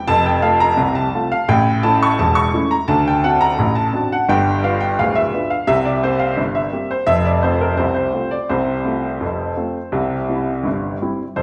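A straight 2/4 ragtime pulse carries this cheerful, jaunty fragment cut from a longer piece, played by a single upright piano that sits up front with a clear, woody, slightly detuned voice and long sustain. The worn instrument spans a broad range from deep bass to bright upper notes, moving through a chain of chords from F to A, D7 and G7 before settling back toward F and C. A wet large-studio reverb gives the sound the feel of a live performance in one room.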